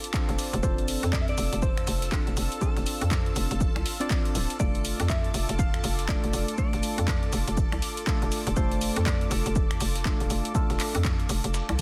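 Swung 16ths at 121 BPM in 4/4 drive this soulful, relaxed deep house excerpt over F6 moving to Dm/F, where a punchy, dry electronic kick sits up front beside a layered house kit of finger snaps, handclaps, hi-hat and toms in studio reverb and a very quiet, gritty sampler-style kit of hi-hat, shaker and snare, a bouncy, knocking FM bass enters at 0.3 s under sidechain pumping, a dark, clean hollow-body jazz guitar carries the melody with delay and 12-bit sampler grit, a chorused, phased organ stab adds mellow percussive hits, and a smooth, warbling analog pad and shimmering string-machine violins sustain in the background of a dense, heavily limited mix with little reverb.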